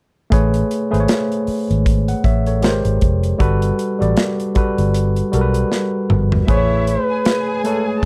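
Lush and smooth, this swung 1970s-style soul excerpt pairs a worn, slightly out-of-tune tine electric piano with light overdrive against a round, foam-muted fingered electric bass and a tight, up-front acoustic drum kit, until a drum fill at 5.7 seconds opens a new section at 6.5 seconds where a jazz-style solo flugelhorn carries the melody alongside a veiled, con sordino string section, all in a dry, close studio sound.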